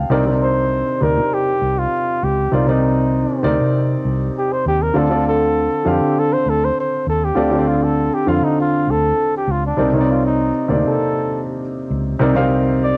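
A straight 4/4 pulse at 99 BPM carries this bittersweet, cinematic stretch of lush 1970s-style soul in C dorian, cut from a longer piece and moving from Cm9 to Dm7 at 5.0 s and back to Cm9 at 9.8 s. A dark, round, foam-muted electric bass anchors the low end while an intimate, up-front grand piano accompanies with audible action noise and short sustain, its sound colored by cassette tape and plate reverb. From 0.4 s a warm flugelhorn takes a jazz-style solo with vibrato and a smooth top, also bathed in plate reverb, all within a moderate booth ambience on a homespun cassette recording.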